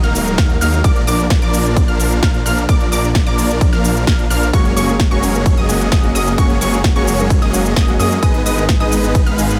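A slow-attack detuned pad, high lush plucks with digital delay, huge bright supersaw chords and a thick, menacing saw bass (the bass, plucks and supersaws pumping with sidechain) open this anthemic, powerful festival progressive house piece at 130 BPM alongside crisp hats, shaker, ride and a punchy snare, with an up-front electronic kick arriving at 0.4 s and a dark, worn grand piano with audible action noise entering in the background at 4.5 s as the chords move from Ebm through Bb and Gbadd9 to Abm in a dry mix.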